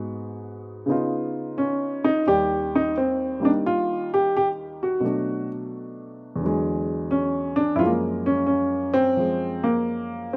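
Solo jazz in a relaxed, playful swing: this 10.4-second fragment of a longer piece features an intimate, natural-sounding grand piano placed up front with audible action noise, moving through chords such as Abm7, Db9, Ebmaj7, Bm7, E9 and Gbmaj9 in the light reverb of a small room and a rough home-demo mix.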